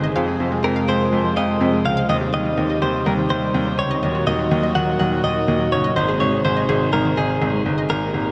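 A bright, clean electric guitar, recorded direct and compressed with analog delay, carries the melody up front from 0.6 s in this wistful, nostalgic synth-pop excerpt, over a clear, intimate baby grand piano playing the bass with audible action noise, a shimmering pulse-width pad holding sustained chords, dark, brassy chorused synth brass, and a round analog pluck playing arpeggios through chorus and delay in the background, the mix soaked in a huge, dreamy ambient reverb.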